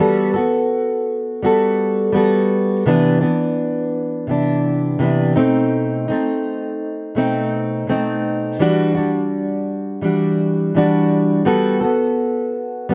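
A fingerpicked, plugged-in steel-string acoustic guitar plays alone from the first moment, carrying this hazy, nostalgic indie pop excerpt in G major at 84 BPM in a straight 4/4. The guitar sits up front with a full-bodied jumbo tone, lush chorus and a warbly pitch drift, and finger squeak is audible as it ranges from B2 to A4. Its chords move from Gmaj9 to Cmaj9, then to a tense B7b9 at 5.4 seconds and an Em9, before settling back on Gmaj9 at 11.5 seconds. Light reverb surrounds the playing, and the whole recording carries the worn, warbling character of old cassette tape. The clip runs 12.9 seconds, cut from a longer piece.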